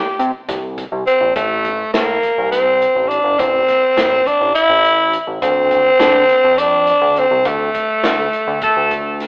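Progressive instrumental band music in a bright, intricate 7/8 at 206 BPM in eighths, this excerpt opens with a raspy, growling tenor saxophone playing alone before a fat, saturated analog bass, a tight-kicked acoustic drum kit and a grainy, barely audible egg shaker join at 0.2 s, all moving from C5 through Am to Dm7 in a stone room with a telephone-like tone, until a clean, picked electric guitar adds a tremolo line at 8.6 s.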